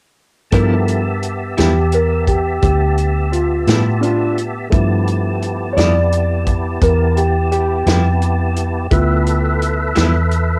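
A dark, mellow grand piano takes the solo across this soulful, swaggering slow blues excerpt in 12/8 over a G13 chord, backed by a clean, compressed electric guitar with tremolo, a fat tonewheel organ with key click, overdrive and a slow rotary speaker, a round, foam-muted bass up front, and a tight soul drum kit of hi-hat, kick and snare, all captured in a light-reverb home cassette recording.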